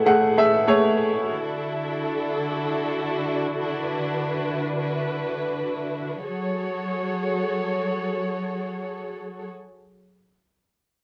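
A brilliant, woody upright piano opens this driving, dramatic piano-driven pop piece in F# minor, playing in free time over F#madd9 until 1.3 s, after which the bowed studio string section carries on alone with intimate, vibrato-laden sul tasto sustained chords through Dadd9 and back to F#madd9 at 6.2 s, running to 9.5 s, with both parts heard through cassette tape in a modest small-room ambience.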